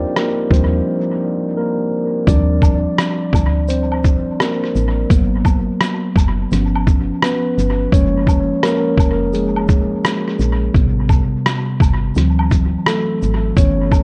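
Lo-fi hip hop at 85 BPM with a cosy, nostalgic mood, swung 16ths and a tape-worn, echo-heavy haze. A mellow tine electric piano sits up front through low-pass filtering and dub echo, taking solo duties over lush jazz chords that open on Ebmaj13. Beneath it a woody, round FM bass decays darkly, and compressed, pitched-down sampler drums with a thumpy kick, rim click, hi-hat and shaker carry a muffled 12-bit grit; from 2.3 seconds a tube shaker and woodblock add a close acoustic touch in the background, with their own dub echo.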